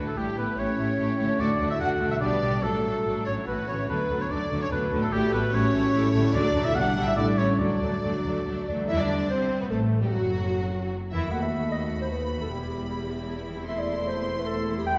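In a fast, straight 3/4 at 138-153 BPM, this stormy, restless romantic orchestral passage, cut from a longer piece, opens in D major as an expressive, soft-attacked violin section carries the melody over bowed violas and a second violin line in the background, a dark, distant clarinet, and a clear solo oboe with an airy, mellow flute ensemble that both drop out at 8.7 s. Beneath them, a dusky French horn section holds sustained chords, a bright concert harp rings out fingerpicked arpeggios, and a focused double bass section anchors the low end with a very quiet, smooth cello section. At 8.9 s the music turns dramatically to E minor. Throughout, the whole orchestra sounds from further back in a reverberant scoring stage with a softened top end.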